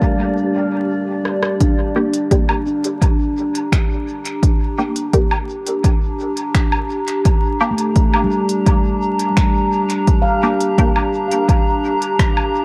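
A warbling, nostalgic tape-like pad holds sustained G minor chords through chorus and its own reverb, while a ringing stainless-steel handpan, played with soft fingertips, spins meditative arpeggios through analog delay and a punchy, up-front electronic kick anchors this deep, spacious ambient dub at 85 BPM in 4/4. A drum fill at 1.3 s brings in a crisp-hatted, tape-tinged electronic kit of finger snaps, hi-hat, rim click and woodblock with dub echo, and from 2.0 s a muted, detuned filtered chord stab adds bright plucks coloured by phaser and 12-bit sampler grit. The echo-heavy mix carries light reverb and a layer of vinyl crackle.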